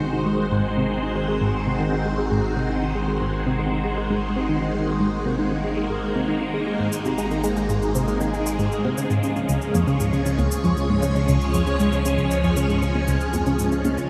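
A straight 4/4 pulse at 117 BPM drives this cosmic, mysterious stretch of sequencer-driven ambient space music, cut from a longer piece, with a tight sawtooth synth riff carrying chorus, phaser and analog delay over a round, deep analog bass. Above them, a bright, swirling vintage string machine holds sustained chords through ensemble chorus and phaser, moving from Ab7 to Db at 9.0 s. Electronic cabasa and toms with analog delay join at 6.9 s, and the whole sits in a vast, echoing cathedral reverb.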